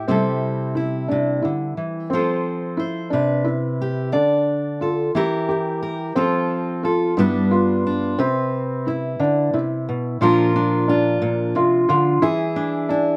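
Fingerpicked steel-string acoustic guitar and felt-muted upright piano begin together at the outset of this hopeful, pastoral acoustic folk piece, cut from a longer work and moving at an unhurried 59 beats per minute in a straight 6/8. The guitar sits up front with a warm, auditorium-sized body, carrying the accompaniment across a broad span from low G2 up to D5. Beside it, the piano plays soft, mellow arpeggios in a narrow middle register, its thick felt giving a muted, intimate tone, and the noise of its action is audible. The harmony drifts gently through C6, F, Cmaj7, Dm, Edim and G, then shifts at 10.2 seconds to a new passage that turns to Bb and closes on E7 by 12.2 seconds. A moderate studio reverb lends the pair a modest sense of room, and the instruments are tuned slightly low, to A4 = 438 Hz.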